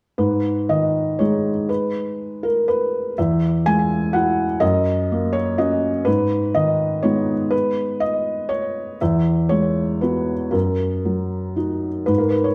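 Neoclassical minimalist piano in a rubato 3/4 feel, this intimate, wistful excerpt features a solo felt-muted upright piano, soft and mellow and placed up front, with a slapback echo and light reverb, ranging from E2 to G#5 as it cycles twice through G#m, Eadd9 and F#6 from 0.2 to 12.5 seconds.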